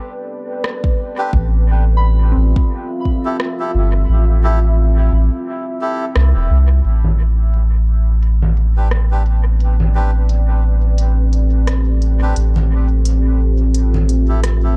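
A round, tube-saturated sub bass sits up front in this hazy, deep ambient dub excerpt at a swung 87 BPM in A minor, beneath a dark, detuned pad that holds Am11 and Fmaj9 chords, breathy, reedy melodica stabs trailing dub echo, a pure FM synth bell arpeggiating softly in the background through the first half, and a deep, tape-coloured electronic kick that is heard only in the opening seconds, while an organic electronic kit of congas, smooth hats and rim clicks, muffled by low-pass filters, set in a large room and soaked in dub echo, takes on a filter sweep from 6.8 s onward.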